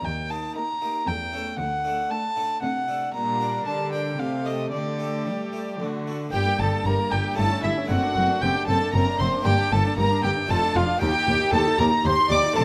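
Close, detailed microphones catch every bow stroke in a moderate recital hall, giving this stormy, dramatic fragment of a baroque-style concerto movement both clarity and a gentle halo of room sound. In G minor, at 116 BPM in a straight 3/4, a dark, nasal solo violin sits up front, singing high with a light vibrato and a reedy gut-string tone. From the first beat a brilliant, airy Flemish-style harpsichord supplies plucked accompaniment beneath it, and a rich cello section carries the bass line. At 0.6 s the period-style ensemble fills in: one violin section also carries a melody from the background, a second violin section traces a supporting line, and a smooth-topped viola section adds shadowed inner harmony. A double bass section enters at 6.3 s to deepen the foundation as the harmony turns restlessly through dominant chords back toward G minor and an unsettled close on Eb.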